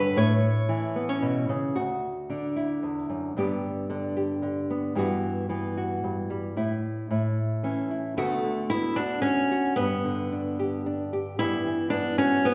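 A triple metre with a straight feel carries this short acoustic folk passage for a guitar duo, cut from a longer piece, with a nostalgic yet hopeful mood. A nylon-string guitar supplies the accompaniment across the whole passage, fingerpicked with a dark, small tone and audible finger squeaks, moving through chords such as D, G and Emadd9/G. A picked steel-string acoustic guitar carries the melody, sounding warm and concert-like as it states a brief phrase at the start, falls silent by 1.2 seconds, and returns at 8.2 seconds to carry the line through to the end. Both guitars sit up front in the mix, framed by the generous, wet reverb of a recital hall that gives the playing a sense of space.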